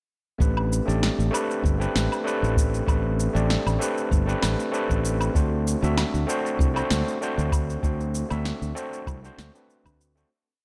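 A barky, gritty tine electric piano pushed through a combo amp accompanies this relaxed, smooth sunset chillout piece at 97 BPM in A dorian, playing dotted-rhythm chords with digital delay over Am11 moving to D7, alongside a growly, up-front fretless electric bass with lush chorus, a deep, soft overdriven electronic kick, and a light lounge beat of shaker, woodblock and punchy snare, all set in light digital ambience before a fade-out from 7.0 seconds.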